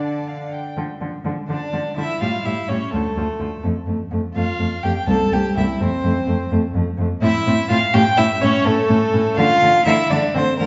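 A reedy first violin with gut-string tone and light vibrato carries the melody up front in this lively, spirited excerpt from a quick classical-period string quartet movement in D minor, set in 6/8 at 84 BPM by the dotted quarter. A rich second violin weaves a second line beneath it while a nasal, up-front cello anchors the bass, and from 0.8 seconds a distant viola adds background accompaniment, all in period style with one bowed player per part. The quartet is heard from further back in a wet recital hall, its dark, softened top giving the spirited minor-key harmony that turns toward F major and back a mellow glow.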